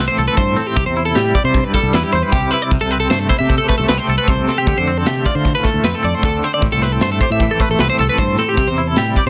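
Up front, a bright, clean twelve-string electric guitar picks arpeggios over a twangy electric guitar with tremolo, a punchy fingered bass and a polished, airy studio drum kit (entering at 0.2 seconds) in this restless, intricate math rock and midwest emo excerpt, moving in 5/4 at 154 BPM in A minor through Am7, Cmaj7, Dm7 and C chords with light reverb and a dense, heavily limited master.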